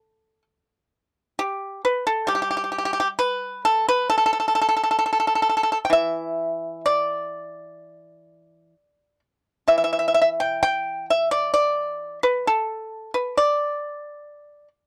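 Moving in a free, rubato pulse around 66 BPM in the D zhi mode, this elegant, pastoral excerpt of Chinese traditional music features a solo pipa, bright and percussive, played with fingerpicks from E3 to G5 and captured up front in a dry, close 1970s-style studio sound with little reverb, running from 0.0 to 14.7 seconds.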